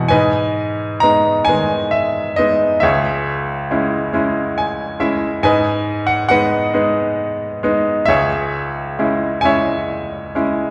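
A bright baby grand piano carries this short classical passage alone, its brilliant, polished tone sitting up front with short sustain. The music is lyrical and melancholic, set in G# minor in a slow 6/8 at 45 BPM counted in dotted quarters, with uneven, rubato beats that give the phrasing a free, breathing quality. Harmony moves between G#m and C#m, and a brief piano fill from 4.1 to 5.4 seconds leads back to the home chord before the C#m returns at 8.1 seconds. The playing spans from C#2 up to A#5, and the overall mood is dark. A wet recital hall reverb of 1.4 seconds surrounds the instrument, placing it in a church or concert hall. The recording lasts 10.7 seconds and is cut from a longer piece.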